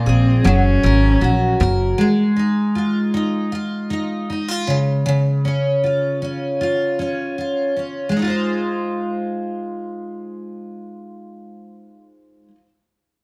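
Acoustic pop at 78 BPM in Ab mixolydian, heartfelt and sunny, this short excerpt opens with a dark bowed cello singing an expressive line with vibrato and portamento through analog delay and a woody, thumpy pizzicato upright bass, both falling away before 2 seconds to leave the full-bodied, double-tracked picked jumbo steel-string guitar carrying the accompaniment up front through chords of Gb, Ab5, Db and Ab6 until 12.7 seconds, all in light reverb and small room ambience.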